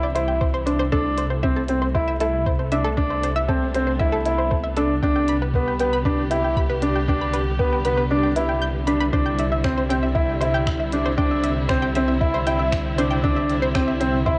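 Cassette-saturated and softened by a moderate spring reverb, this tender, hopeful piano-and-strings electronica fragment sounds like a home recording, with a mellow, felt-muted upright piano riff sitting up front through tape and analog delay. A rich, bowed chamber string section fades in with vibrato-laden sustained chords while a round, bright analog pluck spins chorused arpeggios; both pump against the sidechain, as does the deep, rumbling detuned saw bass. A muffled, thumpy, pitched-down electronic kick and a quiet click kit of finger snaps and hi-hats keep a straight pulse, with the kick dropping out between 8.1 and 9.1 seconds as the Cadd9, Amadd9/C and G/C chords circle back home.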